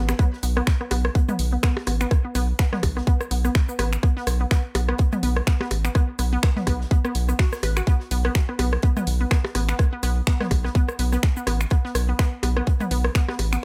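A dry, close-sounding cut from a longer minimal techno piece, running at 125 BPM in 4/4 with a 57% swing on the sixteenths and a quirky, hypnotic mood over a B5 chord, tuned to A4 = 439 Hz. A tight, layered electronic kick sits up front beside a rubbery, hollow square bass that pumps against it. A juicy, squelchy blip pluck riff with chorus, cassette tape colour and tape echo bobs above them. The rhythm is filled out by an analog drum machine re-recorded in a small room, playing finger snaps, hi-hat and shaker, along with a minimal click kit of blips, rim clicks and toms with tape echo, and a very quiet acoustic kit adding hi-hat and a medium-tuned snare.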